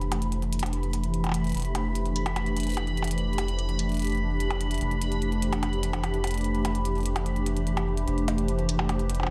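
A hollow, flute-like pad with ensemble chorus holds a sustained Am9/F chord under a filter sweep in this glitchy, wistful IDM excerpt at 147 BPM, set over a round, deep analog bass on F1, clicky electronic hi-hats and percussion blips treated with studio reverb and digital delay, and a bubbling, resonant stepped-filter texture high on B5, all in a light digital ambience.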